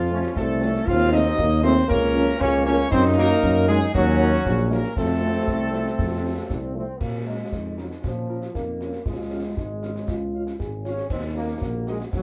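This short cut from a longer wind band march sounds set back in a small, wet room, its brief reverb giving the ensemble a slightly distant, enclosed quality. The music is stern and martial, a military-style march in Bb minor at 117 BPM in a straight 2/4, moving through two statements of the same section, the second beginning at 7.0 seconds. A tight trumpet section carries the melody with a clear tone and light vibrato, while a soft-attacked euphonium with vibrato sings a second line beneath it. The mellow tuba sits up front on the bass, and a trombone section holds smooth-topped sustained chords with light vibrato. A dark, roomy French horn section adds very quiet accompaniment, and concert snare, bass drum and clash cymbals with a dusky cymbal colour keep the march going from 0.2 seconds to the end at 12.2 seconds. The harmony leans on F and Eb minor chords before settling into Bb minor, Db and Eb minor in the repeat.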